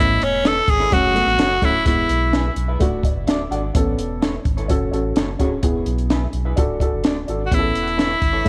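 A straight, uptempo soul groove drives this joyful, uplifting 1960s-style clip, carried by a compact cocktail drum kit with a punchy kick and high-tuned snare, a deep sub bass with octave under tube saturation, and a dark, woody, slightly detuned upright piano. A raspy, forceful tenor saxophone sits up front with vibrato and tape echo, stating the melody until 2.5 seconds and returning at 7.5 seconds. Meanwhile, a twangy, slightly broken-up electric guitar through a small old amp adds echoed stabs in the background over a cycling Aadd9, F#m, E, D progression in a light reverb.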